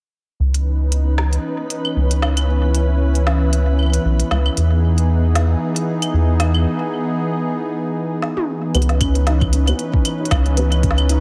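A softly reverberant, glitchy and melancholic IDM excerpt swings gently as a detuned sawtooth pad in chorus sustains minor-key chords over a rubbery, hollow square bass, while a flickering granular texture drifts in the background until 6.7 seconds, an organic electronic kit with a woody snare, smooth hats, claves and toms rides tape echo into a break and fill, and at 8.7 seconds a felt-muted, boxy upright piano arpeggiates under a filter sweep, joined at 9.0 seconds by an overdriven soft electronic kick.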